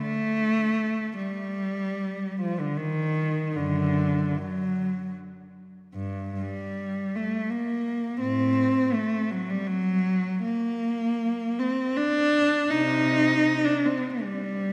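A long, wet church reverb of 2.9 seconds surrounds a single bowed cello, heard close and up front, its rich tone carrying vibrato, soft attacks and sliding portamento. This free, expressive classical passage for unaccompanied cello, cut from a longer piece, sits in G minor and 3/4 with a rubato feel that drifts between 44 and 85 BPM. The mood is mournful and lonely, with the cello playing alone throughout its 14.7 seconds.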